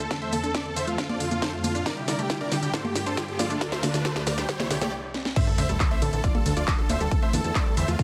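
Set in light digital reverb, this driving, soaring uplifting trance excerpt at 137 BPM in 4/4 builds over a huge detuned supersaw lead with dub echo, bowed strings, a bright filter-swept pluck arpeggio, a punchy up-front kick and an overdriven techno kit with cracking snare, congas, claps, shaker and cymbals, with a very quiet riser and sub drop, then stops at 4.9 seconds before the drop at 5.4 seconds brings in a clear background baby grand piano, joined at 5.6 seconds by a fat, saturated analog bass, everything but the drums and effects pumping to the sidechain over chords moving from Am/E through F, Cadd9, Gm7 and Dm.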